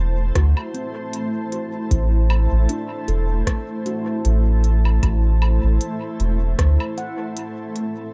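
A blurred, granular cloud pad with vintage sampler grit holds sustained chords beside mellow, ringing handpan arpeggios touched with tape echo and a deep, round sub bass up front, while from 0.4 seconds a muffled, overdriven kick sits in the background and a crisp, tape-tinged kit of hi-hat, rim click and woodblock trails dub echo, shaping a hazy, spacious ambient dub excerpt with a light swing and an echo-heavy mix in which the bass drops away at 6.8 seconds.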